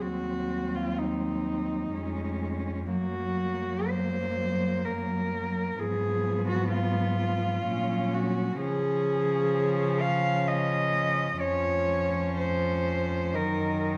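In a flexible, rubato three-beat metre, this lyrical classical fragment for a cello ensemble unfolds slowly, warm and lyrical in mood. The melody belongs to a single bowed cello played sul tasto, dark and intimate, with vibrato, a soft attack and an airy bow, sitting close and up front in the mix. Beneath it, three more solo cellos, also bowed sul tasto with gentle attacks, carry a second line, an inner accompaniment and a bass part, their tone pure and floating with a smooth top. The harmony moves through diminished and inverted chords that settle onto the home chord before drifting onward. A moderate recital-hall reverb surrounds the group, and the melody falls away at 13.8 seconds while the lower three voices sustain to 14.0 seconds, where the passage is cut from the longer piece.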